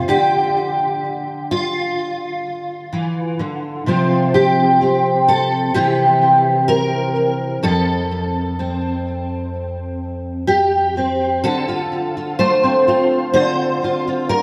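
A fingerpicked steel-string dreadnought guitar plays this short folk excerpt alone, its fresh strings and full-bodied tone sitting up front while ensemble chorus and delay shimmer on the instrument. The playing moves at an unhurried 63 BPM in a straight 4/4, ranging from F2 to C5 through Dm, Csus4, C and F, and shifts to a Dm7 passage at 11.4 s. A long plate reverb of 3.5 s bathes the mix in a dreamy haze, giving the piece a hopeful yet nostalgic mood.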